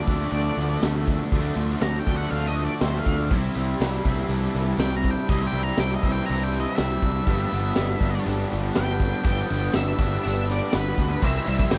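This carefree, jangly indie rock excerpt opens straight into a guitar solo, with the octave-fuzz lead carrying the melody in a dark, fuzzy, distorted tone trailed by tape echo. Beneath it, a bright, overdriven electric guitar plays a riff thickened by ensemble chorus, joined by a lo-fi garage guitar sitting in the background and also playing a riff. From 0.1 s, a round, up-front fuzz bass and a raw drum kit come in. The kit sounds distant and roomy, with a high-tuned snare, punchy kick, crash and hi-hat, and a gritty, saturated character with a rolled-off top. A very quiet, jingly tambourine slips in at 3.4 s, while the chords move from Dm through Cadd9 and G to settle on C in a dry, straight 4/4 groove.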